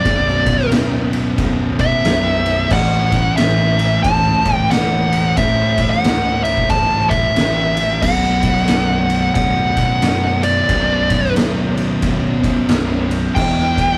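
From the first moment, a dark, compressed fuzz lead guitar carries the melody up front over a faint, lush string machine pad and two thick fuzz guitars grinding out the riff, one of them barely audible, while an oversized low-tuned drum kit with a fat snare and punchy kick and a round, overdriven picked bass in the background join at 0.1 seconds, forming a sludgy, heavy stoner and doom metal piece in B minor at 90 BPM with a swung feel, moving from Bm through A and back to Bm before touching Em, all captured as a rough rehearsal-room recording with tube saturation and light reverb.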